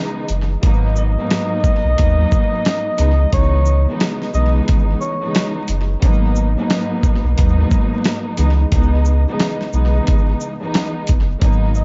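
A bowed studio string section opens this reflective, tough boom-bap hip-hop excerpt, its smooth-topped ensemble sound carrying vibrato and portamento through a cassette-tape haze and filtering. At 0.3 seconds a round sine sub bass and a dusty, sampler-style drum kit arrive together, the bass sitting deep and up front while the compressed, gritty kit brings a thumpy kick, a medium-tuned snare, hi-hat and shaker at a relaxed 89 BPM with a loose sixteenth-note swing. A breathy tenor saxophone takes the melody from 1.0 to 5.5 seconds, playing in a mellow jazz style with light vibrato and scooped notes, sounding distant and roomy under tape echo and filtering. The harmony moves between C#m9 and G#m9, giving the passage a moody, soulful colour. The whole mix is echo-heavy and darkened at the top, with vinyl crackle and a faint mains hum adding to its worn, vintage character.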